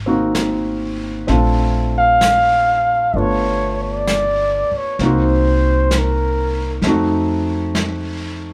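A woody, thumpy upright bass opens this wistful, smoky jazz ballad at 0.0 seconds, plucked with steel-string bite and sitting up front. Almost at once a concert grand piano joins with intimate accompaniment, its deep bass and natural tone set close enough that the action noise of the instrument is audible. A vintage brush kit follows on brushed snare and hi-hat, lo-fi and muffled with a rolled-off top, as if played in a small room, and it sits lower in the mix than the others. At 2.0 seconds a mellow flugelhorn takes the melody, its soft attack, smooth top and gentle vibrato carrying a solo line until 6.9 seconds. The swung eighths and rich chords such as Bbmaj9, G7 and F7b9 give the band, heard live together in one room with light reverb, a late-night glow in this short fragment of a longer piece.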